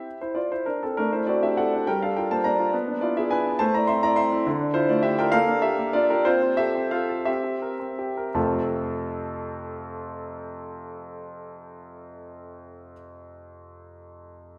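Graceful and cheerful, this classical-period piano sonatina in F major moves in a lilting 6/8 at roughly 53-71 BPM in dotted quarters, shaped with a gently flexible rubato. A clear concert grand carries the music alone for the full 14.6 seconds, reaching from deep bass notes up into the upper register. The instrument sits up front with an intimate, polished presence, and the mechanical sounds of the action can be heard beneath the long, ringing sustain. The harmony passes through C, D7/A, Gm7 and E7/B. From 3.6 seconds the pace slows as the phrase moves through Am, Dm, Gm/Bb, F/C and C7 to a cadence on F at 8.4 seconds, where a contrasting second section begins. A generous concert-hall reverb surrounds the piano, giving this fragment of a longer piece an airy, resonant setting.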